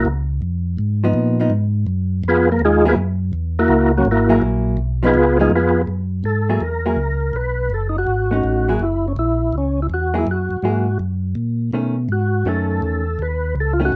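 This swinging, bluesy jazz excerpt opens on a round, mellow tonewheel organ bass line that runs through the whole cut, its key click audible through a slow rotary speaker. The section from 0.0 to 5.9 seconds is an organ solo, with a hollow-body electric jazz guitar entering at 1.0 second and a percussive tonewheel organ taking the melody from 2.3 seconds. The melody organ sounds full and lightly overdriven, with a second-harmonic percussion attack, chorus vibrato and a slowly turning rotary speaker. The picked guitar comps in a dark, clean, compressed tone, all three parts sitting up front in a small, moderately reverberant room. At 164 BPM in 4/4 with swung eighth notes, the harmony moves among C#9, F#9 and B9 chords in F# mixolydian, and the music is cut off mid-flow at 14.0 seconds.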